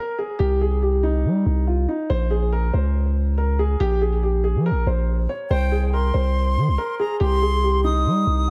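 A small room ambience with light reverb frames this dark, tense hip hop fragment, cut from a longer piece and moving with a half-time feel. A dark concert grand piano carries the melody from the start, its mellow, vintage tone given a lush chorus, a low-pass filter and delay that keep it smooth and up front. From 0.4 seconds a long, sustained 808-style bass sits beneath it, a deep sine tone with a fast attack that then decays, standing forward in the mix. The harmony moves from C minor to B-flat minor add nine at 2.1 seconds and back to C minor at 5.5 seconds. At that moment a silver concert flute enters as a second line high above, airy and metallic with vibrato and a soft attack, trailing delay through to the end of the fragment.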